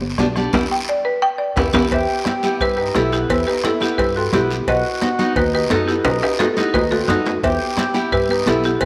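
Danceable, driving cumbia at 174 BPM in E harmonic minor, led up front by a dry, buzzing, woody marimba struck with hard mallets over pizzicato upright bass, fingerpicked nylon-string guitar with audible finger squeak, high-tuned ringing congas, a soft-beater bombo, raspy guiro and background metal-shell timbales and cowbell, with a band accent and drum fill in the opening marimba feature before a reedy, mellow accordion joins as a second line at 1.9 seconds, moving from G to E minor and B7 with another drum fill at 6.1 seconds, all set in a moderate echo chamber reverb with small room ambience.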